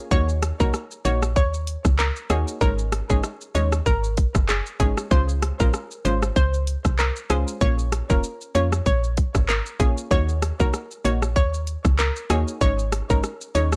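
Summery, sunny dancehall at 96 BPM with a light 16th-note swing, where a tight, up-front island pop drum kit of kick, dark hi-hats, handclaps, rim clicks and shaker plays alongside a woody, round FM bass, while crisp, nasal wavetable chord stabs pump against the beat and a hollow, bouncy square-wave pluck carries the melody through chorus and analog delay over Ebm7, Absus4, Dbmaj7 and Bbm, with soft-handed maracas and timbales tucked in the background of a dry, gritty cassette-tape sound.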